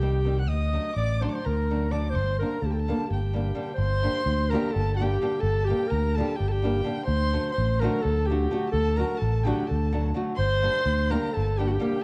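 Straight 7/8 at 254 BPM in eighths gives this restless, virtuosic Balkan wedding-band fragment in G harmonic minor its lift, as a soft-attacked, up-front classical clarinet carries the melody over a dark, woody bowed violin line with vibrato, a small fingerpicked nylon-string guitar with old strings, and a growly, amped fingered electric bass that drops out at 11.8 seconds, all set in a moderate recital hall reverb with a dark, warm production while the harmony moves between D and Gm.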